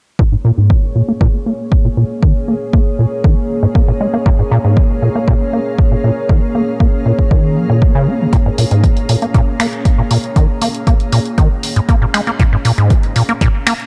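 A steady 4/4 pulse at 118 BPM drives this hypnotic acid house excerpt in Bb minor, with a punchy, tape-warm electronic kick sitting up front from the opening and a punchy analog drum machine adding finger snaps and hi-hat from 8.3 seconds. Carrying the riff is a deep, rubbery acid bass built on a resonant square wave with a fast, plucky attack and saturated tone, pumping against the kick, trailed by tape echo and shaped by a filter sweep across the whole passage. Alongside it, a dark analog pad holds sustained Bbm7 chords with detuned sawtooth and triangle layers, a sub octave and chorus, fading in and breathing with sidechain pumping. From 2.0 seconds a faint granular cloud pad drifts in higher up, its blurred, evolving unison sines softened by built-in reverb. The production is dark and dry, keeping the driving groove close and focused.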